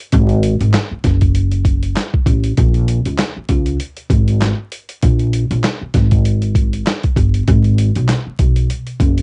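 This tough, gritty boom-bap hip-hop excerpt is built on a boom bap sampler-style drum kit, its compressed, pitched-down sound carrying a thumpy kick, a medium-tuned snare, hi-hat and handclaps, all treated with a cassette tape character and placed up front. The groove moves at 98 BPM in 4/4 with a 56% swing on the sixteenths. An upright bass plays pizzicato beneath it, woody and acoustic with steel strings, sitting in a low range from F#1 to C#2 and also mixed up front. Both parts run together for the full length, from 0.1 to 9.2 seconds, as a single section cut from a longer piece. The sound is dry, with little reverb, and has a home-recorded cassette quality, vinyl crackle and a dull top end that tops out around 10.6 kHz.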